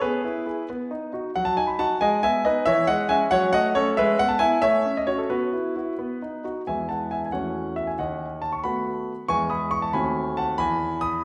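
A polished concert grand rings out in a recital hall with a wet reverb, its deep bass and audible action noise giving this short passage from a longer classical-period sonatina an intimate, up-front presence. Alone throughout, the piano moves in a lilting 6/8 through graceful, elegant phrases. A second phrase begins at 6.7 seconds and closes through a diminished chord back to the home chord at 10.6 seconds.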